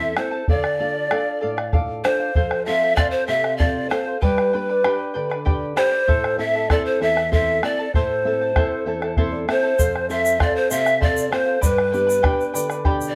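Breathy cane pan pipes carry the wistful, melancholic melody up front with a soft, chiffy attack and gentle vibrato, while a brighter, reedy bamboo pan flute sits in the background on a second line in this Andean folk excerpt at 65 BPM in a straight 6/8. A shimmering, fingerpicked charango with double strings and a thumb-plucked classical nylon-string guitar supply accompaniment over a Dm, F, G and Am progression, with the guitar adding a fill at 8.9 seconds. A round, close bombo drives the pulse up front, a grainy egg shaker joins at 9.8 seconds, and moderate studio reverb sits within a dark, warm production.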